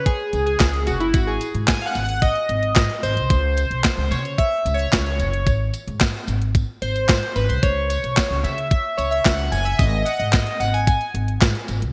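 A chorused polysynth sits up front in this slick, danceable early-eighties boogie funk excerpt at 111 BPM, its glossy pulse-wave and sawtooth tones evolving through pulse-width modulation and filter sweeps over chords moving between F#7sus2, G# and F#7(no3). A clean 12-bit drum machine pushes a thumpy kick, medium-tuned snare, hi-hat and handclaps through overdrive and gated reverb, while a woody, dark pizzicato upright bass with steel strings sits close and a very quiet, jingly tambourine shimmers in a small room. The bright digital production is wrapped in a lush hall reverb with a 2.4-second tail, and the polysynth drops out at 11.1 seconds as the rhythm section carries on to the end.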